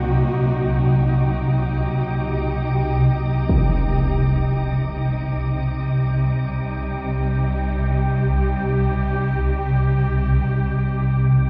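Cavernous and unsettling, this dark ambient excerpt drifts in free time, tuned to A4 = 441 Hz, as a swarming, detuned drone sits up front with a granular, warbling, vintage edge and its own reverb. Behind it, a lush, bowed cello section holds sustained chords with vibrato and portamento, moving from Ebm to Cm at 3.5 seconds, where a huge, low-pass-filtered impact strikes briefly. A cathedral reverb with a 6.8-second decay fills the dark production, stretching the sound into a deep, tense space.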